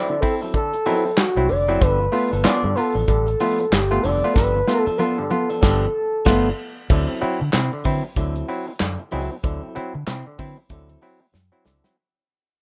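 A smooth, sustained sawtooth synth lead carries a chorused, plate-reverbed melody over stringy clav stabs up front and a slightly broken-up, picked electric guitar in the background to open this strutting 94 BPM funk cut in D mixolydian, swung on the 16ths and moving from D9 to G9, as a tight-kicked soul drum kit with dark cymbals, handclaps and toms joins almost at once and a round, foam-muted fingered bass enters at 1.4 seconds, the lead dropping out at 6.5 seconds during a drum fill and full-band accent, before the groove fades out from 6.9 seconds in a rough, small-room home demo mix.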